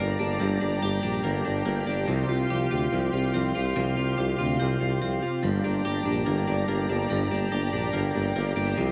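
Indie pop cut from a longer piece, wistful and restless, where a vibrato-laden tuba sits up front with a punchy bass line, a bright, twangy twelve-string electric guitar picks clean, compressed arpeggios with cassette-tape color, a thick, warbling unison pad holds detuned sawtooth chords through chorus and tape, and a very quiet, full-bodied fingerpicked acoustic guitar accompanies them in a small, lightly reverberant room captured on a home cassette recording.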